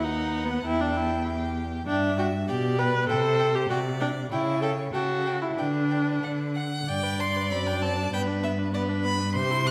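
Bathed in a wet recital-hall reverb, this spirited, graceful extract from a quick classical-period string quartet movement in G major at 97 BPM in 2/4 moves with a rubato feel, as a smooth, vibrato-rich first violin carries the melody up to F#6 over a focused second violin line, while an up-front bowed viola and a clear cello supply accompaniment and bass through harmonies that turn from B/D# and Em toward a new section settling on G at 6.9 seconds.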